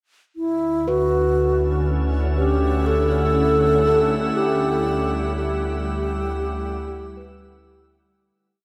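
An airy alto flute with vibrato carries an arching, motif-based melody up front in this peaceful ambient piece at 60 BPM in D major, its shimmer reverb and delay floating over a pure, organ-like pad of slowly shifting chords, a deep, round sub bass holding the root, a tense, string-like drone in the background, a glassy high texture of drifting overtones and the scattered, ringing notes of a very quiet handpan, all set in a huge, wet reverb, while the harmony moves from Dmaj9 to Emadd9/D at 4.4 seconds as the piece fades out toward its close at 8.6 seconds.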